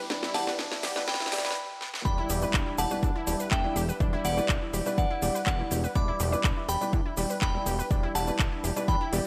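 A glassy, crystalline FM synth bell carries the melody through this dreamy, emotional progressive house excerpt at 123 BPM in E minor. The bell has chorus, phaser, delay and a filter sweep during the opening build-up, while a punchy electronic kick sits up front and a house kit adds cracking snare, handclaps and metallic hats. A detuned unison pluck plays arpeggios and a felt-muted upright piano plays mellow stabs, both with sidechain pumping and dub echo, over a fat, tube-saturated analog bass. A very quiet riser lifts the build, and a matching impact marks the arrival of the drop. After a drum fill and a stop at 1.6 seconds, the drop lands at 2.1 seconds, where a soft, pure second synth bell and a grainy egg shaker join, set in light digital ambience.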